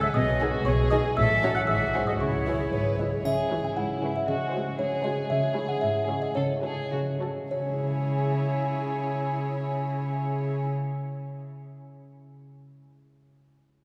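A cavernous cathedral reverb bathes this cut from a longer film cue, giving its sneaky, magical, whimsical mood a distant, hallowed glow. A delicate, tinkling music box carries the melody high above a violin section that also carries the melody in soft, sul tasto tones with light vibrato, while a second violin section and a dark, background viola section fill in the lines beneath. A bright, airy silver flute adds a second line until 3.0 s, and a ringing, thumb-plucked concert harp spins arpeggios throughout. A warm cello section holds the bass, joined in the opening moments by a shadowy double bass section, and a faint triangle chimes in at 3.3 s. The playful cue slows down from 4.8 s as its minor harmonies turn back home.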